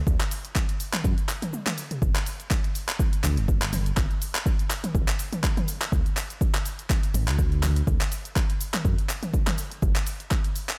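A digital ambience frames this short afro house cut from a longer piece, spiritual and warm in mood at 123 BPM in 4/4 with a 55% swing on the sixteenths, tuned to A4 = 436 Hz. A punchy, up-front electronic kick and a layered deep house kit of cabasa, handclaps, hi-hat and toms sit in studio reverb, with a break and drum fill between 1.5 and 2.0 seconds. Underneath, a smooth, dark synth bass blending detuned sawtooth and triangle tones glides with portamento and vibrato through a moving notch, pumping against the sidechain from G1 to F#2.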